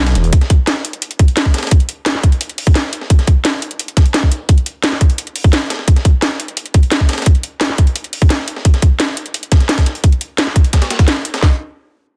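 A tight kick and cracking snare from an electronic, layered drum kit sit up front in this dark, aggressive slice of technical drum and bass, driving a straight 4/4 groove. A second layered kit adds metallic hi-hats and its own snare, also produced and re-recorded in a small room so the two blend into one hard-hitting, close-sounding whole. Buried far beneath them, a very quiet breakbeat sampler-style kit contributes gritty, compressed hi-hats and a pitched-up, high-tuned snare with a tape-warm character. All three kits run together from the opening moments to about 11.5 seconds in a single section, cut from a longer piece. Light reverb and digital ambience frame the drums, and the dense, heavily limited modern master keeps the pressure relentless.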